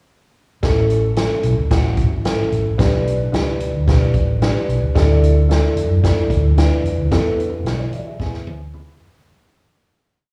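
At 0.6 seconds a short, uptempo 1960s-style soul piece in A major begins, with piano, bass and drums arriving together at 111 BPM in a straight 4/4 and an uplifting, warm mood. The acoustic drum kit sits up front with a punchy kick and medium-tuned snare, driving a soul beat with the snare on every beat. A vintage electric bass, fingered and foam-muted, plays a melodic, syncopated line with a dark, round, amped tone. An upright piano with a mellow, woody, boxy character and long sustain plays close-voiced chords in quarter notes, touched by slapback echo. The single verse moves through A, G/B, Dsus2, Esus4 and E, and a fade-out begins at 7.1 seconds, with a piano fill from 7.7 seconds and a drum fill closing the piece. The sound carries light reverb, with the feel of a live gig heard through a venue's PA in a recital hall.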